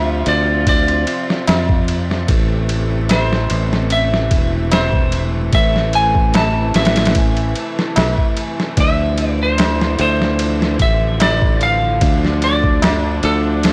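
A dry, gritty recording with vinyl crackle frames this hypnotic, smoky trip hop excerpt in A minor at 74 BPM, where a clean lap steel guitar carries the slide melody through dub echo over distant bowed chamber strings, a growly, up-front fingered electric bass, a thumpy boom bap sampler-style kit of kick, snare and ride with 12-bit grit entering at 0.3 seconds, and a high-tuned, ringing tabla in the background from 1.5 seconds, moving through Dm7, Am and Dm9.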